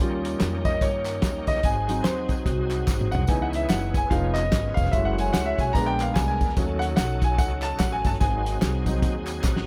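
Soulful and solemn, this uptempo gospel excerpt swings at 146 BPM in 4/4, with a clear, up-front concert grand piano taking the lead over chord changes from D#7 through C#m7 and A#7b9 to G#7. A bright, shouting tonewheel organ with key click, light overdrive and slow rotary speaker holds sustained chords beside a very quiet, mellow French horn section, while a woody, growly pizzicato upright bass and a fat-snared, rolled-off soul drum kit drive the groove, with drum fills near 2.9 and 9.4 seconds. Compressed tambourine, maracas and group handclaps sit low in the mix, a dark, clean electric guitar through a phaser adds a brief second line between 2.0 and 3.1 seconds, and the organ closes with a fill in a dry, close-sounding room.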